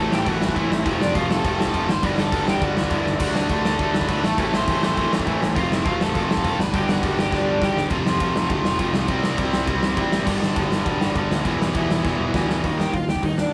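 Punk rock with a rowdy, rebellious edge, this short cut from a longer piece charges ahead in a straight four at a fast clip, captured as a rough rehearsal-room recording with light reverb. A big acoustic rock kit sits up front with a punchy kick, medium-tuned snare and bright cymbals ringing in a large room, marking fills at 3.1 seconds and again near the end of each section. Behind it, three electric rhythm guitars hammer out riffs: a crunchy overdriven one, a hollow-bodied semi-hollow with its own overdriven bite, and a tight, double-tracked distorted guitar, all bright and picked. A growly picked bass, blending direct and amped tone, holds down the low end in the background. Over the top, a high-gain distorted lead guitar with a warm tone carries the melody through the opening section, drops out at 7.8 seconds as the chords shift to a new progression, and returns only briefly at 12.8 seconds.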